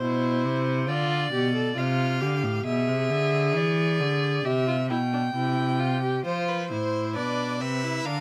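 Closely miked and nearly dry, this lively, joyful fragment of a baroque-style fugue for string quartet, in C major at 67 BPM in 4/4 and tuned to A4 = 438 Hz, sets a smooth, up-front violin on the second line, a rich viola accompaniment and a clear cello bass, all bowed with vibrato, before a more distant, focused violin melody enters at 6.2 seconds.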